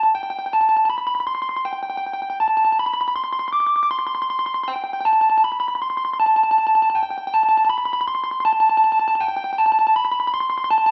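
In a slow, straight 6/8 at 53 BPM counted in dotted quarters, this melancholic, cathartic rock fragment from a longer piece serves as a build-up across its 10.9 seconds. A picked electric guitar through a small old amp carries the melody high between G5 and D6, its slightly broken-up, lo-fi tone sitting up front. A wet stone-room reverb with a 1.1-second decay wraps the sound, giving the feel of a band playing live in one room.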